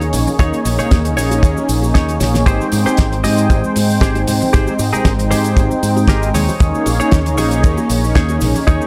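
A lightly swung 4/4 groove at 116 BPM drives this sunny, feel-good nu-disco excerpt in Ab major, anchored by a tight, up-front kick that enters at 0.4 seconds and a damped 70s kit with a fat snare, hi-hat and cabasa that plays a fill at 2.2 seconds, with very quiet, ringing bongos, congas and tambourine underneath. A fingered electric bass with an envelope filter holds the low end, while a clean, twangy, scooped guitar plays a picked, compressed riff through chorus and delay, and a smooth, detuned sawtooth pad sits up front with a filter sweep running through the whole passage. The chords move from Eb7sus4 to Abmaj7 and back, and a moderate spring reverb with small-room ambience gives the mix an echo-heavy sheen.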